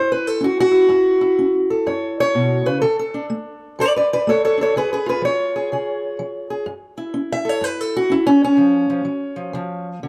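A boxy, up-front fingerpicked parlour steel-string acoustic guitar carries this brooding, smoky acoustic country blues fragment alone from 0.0 to 10.1 seconds, swinging at 125 BPM in 4/4 in F# minor, tuned to A4 = 444 Hz, ranging from F#2 to E5 over F#m7, D5 and C# chords with light reverb.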